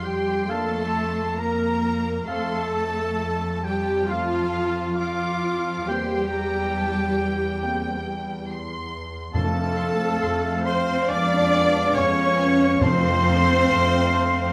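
A lush, vibrato-rich violin section carries the melody high above the orchestra in this tender, slow classical excerpt in F major at 68 BPM, played with rubato in 4/4. A clear, distant second violin section, an airy silver flute, a vintage-toned oboe and a roomy clarinet trace second lines in the background, while a smooth, even viola section fills out the accompaniment over a bowed cello and double bass foundation. Mellow French horns hold soft sustained chords and a solo trumpet adds stabs from 0.5 seconds, and very quiet, round timpani enter at 9.3 seconds, all in light reverb with close, detailed miking.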